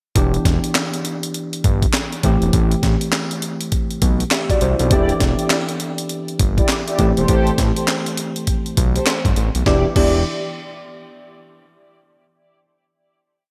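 New jack swing R&B in E minor at 101 BPM, this short, bouncy and punchy piece rides a hard-swung, sampler-style drum-machine beat with a thumpy kick, a gritty high-tuned snare layered with handclaps, hi-hat and crash, compressed and up front with gated reverb, under a fat, detuned analog bass line that slides and bounces through its swung synth-funk part. A worn, slightly out-of-tune tine electric piano with subtle chorus holds Em7 and Am7 chords and adds short fills, and from 4.9 s mellow synth brass joins with round, nasal, syncopated stabs colored by a filter sweep, vibrato, chorus and delay. The bright 1980s-style digital production sits in a moderate plate reverb, and the verse resolves onto a final Em7 chord at 9.7 s.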